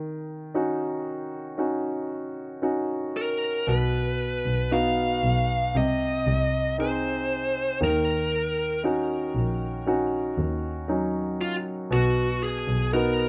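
A dark, distorted electric lead guitar carries the melody up front from 3.2 seconds in this heartbroken, melancholic pop ballad fragment, over a clear concert grand piano with deep bass that opens alone and a distant bowed double bass that enters at 3.7 seconds with expressive vibrato and portamento, all in a rough home demo mix with light reverb.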